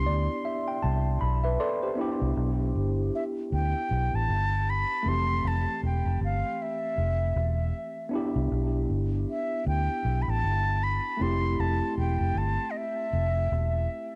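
A swung 4/4 pulse at 78 BPM in C major carries this tender, sweet lovers rock reggae fragment from a longer piece, where a worn, slightly out-of-tune tine electric piano, lightly overdriven and coloured by cassette tape, tape echo and plate reverb, opens with a fill over the first 2.0 seconds before settling into Cmaj9 and Fmaj7 harmony beneath a breathy, close-miked concert flute melody with a straight tone and soft attack, sharing the same tape echo and plate reverb, while a dark, round, punchy foam-muted fingered electric bass sits up front, all captured as a home cassette recording in a lightly reverberant room.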